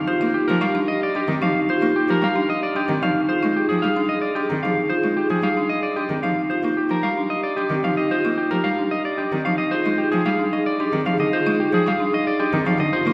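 Set in a wet concert hall with a long reverb tail, this excerpt from a longer minimalist classical pattern piece moves at 112 BPM in 3/4, feeling at once urgent and meditative as it alternates Ebadd9 and Fm7 chords. A clean, picked electric guitar carries the melody up front, while a folk marimba struck with hard mallets spins bright, woody, percussive arpeggios on its hardwood bars. Beneath them, a single bowed cello adds rich, expressive accompaniment with vibrato and portamento from 0.2 seconds, and an airy, hollow alto flute plays a mellow second line in the background.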